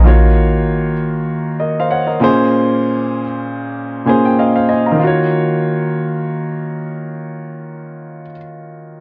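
Hip hop at 97 BPM in 4/4, with a swung sixteenth-note feel, this short excerpt sets a reflective, dark mood in E-flat dorian. An upright piano carries the accompaniment from 0.0 to 9.0 seconds, ranging from Bb2 up to Bb5 over minor ninth chords that move from Ebm9 to Bbm9 and return to Ebm9 at 5.0 seconds, where a new section begins. The instrument sounds warm, woody and intimate, with audible action noise and a long sustain, and it sits up front, sounding polished and present. High-pass and low-pass filtering shape the piano's tone. A small room ambience and a dark, warm production frame the passage.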